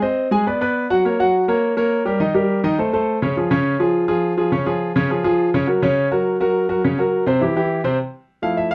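Jazz solo piece at a brisk 207 BPM in straight 4/4, this sunny, sophisticated excerpt features a smooth, vintage-toned grand piano played up front from C3 to Ab5, moving through chords such as Cbm, Gb, Eb, Am and Db before arriving on Fmaj7 at 8.0 seconds, all set in a moderate studio reverb.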